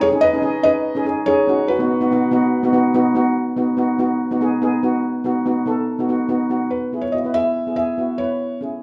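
Calypso with a sunny, festive mood, heard in a short fragment cut from a longer piece. A felt-muted upright piano carries the melody, sounding mellow, intimate and vintage, with its thin felt and the audible clatter of its action placed up front. It plays the tune from the start, falls silent through the middle section, and returns at 6.7 seconds for the closing stretch. A double seconds steel pan, struck with soft rubber sticks, supplies shimmering, airy accompaniment from 0.1 seconds to the end, its metallic ring kept gentle and close. The harmony moves from C#sus2 to B and finally settles on E. The band plays live together in one room, wrapped in a moderate large-studio reverb that gives the performance an easy, open glow.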